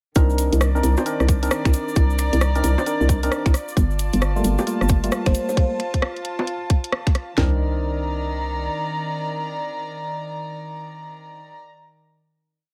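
Lightly reverberant and punchy, this moody, late-night two-step UK garage piece swings an overdriven, up-front garage drum kit of tight kick, cracking snare, toms, bongos, finger snaps, hi-hat and rim clicks under a hollow, knocking FM bass that pumps to the sidechain, dark chorused organ stabs with digital delay moving one chord shape between Cm9 and Gm9, a distant, floating chamber string section, a grainy cabasa in the background, a very quiet, silky string machine holding a high note, and a brief buzzing, woody kalimba at 5.3 seconds, before the drums stop around 7.5 seconds and a final Cm9 chord rings from 7.4 seconds.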